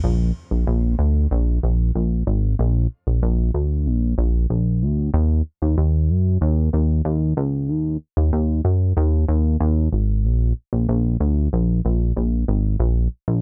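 A dark production with little reverb frames this melancholic, hazy dream pop excerpt at 94 BPM in a straight 4/4, tuned to A4 = 441 Hz, where a retro, glossy chorused synth bass sits up front from 0.0 to 13.4 s, blending pulse-wave, sawtooth and triangle tones with pulse-width and ring modulation and a filter pluck, its fast-attack, sustained, mellow notes ranging from Ab1 to Gb2.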